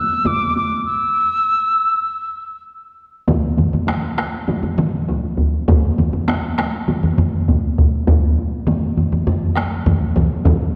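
A pure, mellow wooden piccolo opens this ceremonial, powerful Japanese traditional taiko excerpt with a tongued, vibrato-laden line that ends at 2.6 seconds, as two taiko ensembles struck with hard sticks come in beneath it, one vintage and band-limited and the other close and dry, before two more taiko ensembles join at 3.3 seconds, one with hard sticks in a live room and one with heavy sticks sitting up front with a vintage, band-limited sound, all within a dark production and the long decay of a concert hall.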